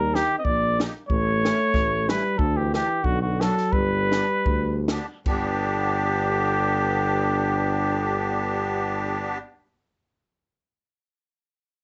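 Alpine folk dance-band music in 2/4 with a lightly swung, bouncy and jolly feel at 71-93 BPM in G major, led by a clear, vintage-toned flugelhorn melody with light vibrato up front over a dark, soft-attacked euphonium second line in the background, a mellow close-miked tuba bass and a reedy, shimmering musette accordion accompaniment, while a compact, dry cocktail drum kit with punchy kick, high-tuned snare and dim-sounding crash plays until 5.5 s, the tempo slowing from 2.4 s to 5.3 s in a small room with moderate reverb, in a short passage cut from a longer piece.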